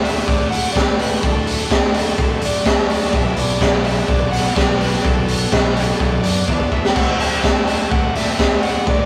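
A picked overdriven electric guitar carries the melody in this carefree, wistful indie rock excerpt, over a distorted guitar riff in the background, a very quiet second overdriven riff guitar, growling fingered bass with bright overdrive and a barely audible tonewheel organ with key click and slow rotary speaker, while an up-front raw garage drum kit with a punchy kick, high-tuned snare and dark cymbals joins at 0.1 seconds and plays a fill at 6.5 seconds, the chords moving from D to Bm and back in a rough rehearsal-room recording with light reverb.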